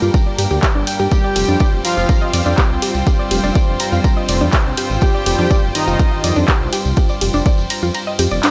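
The sound is dry and gritty, with a faint mains hum under a digital ambience, in this hypnotic, driving melodic techno excerpt at 123 BPM in a straight 4/4, moving from G minor to an F power chord. A punchy, layered electronic kick sits up front with a deep house kit of handclaps, dark hi-hats and ride cymbal, both re-recorded in a small room, while a jingly acoustic tambourine rings in the background. An evolving, menacing detuned saw bass with a filter swell and tube saturation anchors the low end, and a warbling, lo-fi pluck runs arpeggios through chorus and analog delay. A lush unison pad, a reedy, distant period-style chamber string section and a very quiet, tense bowed-like drone fill out the backdrop, with the pad, strings, bass and pluck breathing to sidechain pumping. From 1.1 to 6.4 s, a bold, fat analog synth brass carries the melody with a filter sweep, shadowed by a smooth, soft supersaw second line in the background, before the kick drops out near the end.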